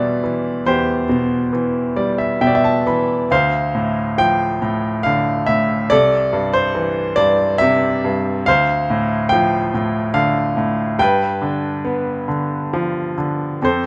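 Close, detailed microphones and light reverb frame an up-front grand piano, brilliant and intimate with audible action noise, in this calm, lyrical classical solo piece cut from a longer work, played at 70 BPM in 3/4 with a rubato feel in C major (tuned to A4 = 438 Hz), spanning C2 to B5, adding a fill at 1.5 seconds, and moving from Cmaj7/E through Dm7 and C6 to G7.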